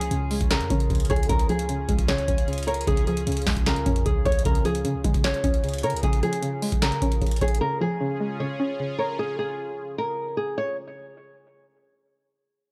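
A booming analog drum machine anchors this wistful, dreamy trap excerpt in Db major at 152 BPM with a half-time feel, its deep kick, crisp snare, handclaps and metallic hi-hats sitting up front with a short room on the snare, clap and hats. Alongside it, a dark, woody fingerpicked nylon-string guitar with old strings carries the melody through low-pass filtering and tape echo. A twangy, string-like resonator pluck with chorus, an evolving sawtooth pad with a bright filter swell and sub octave, and a clean, boomy sine 808 bass in the background fill out the dry, gritty hardware sound with transformer saturation; the bass drops out at 6.0 seconds and the drums at 7.6 seconds.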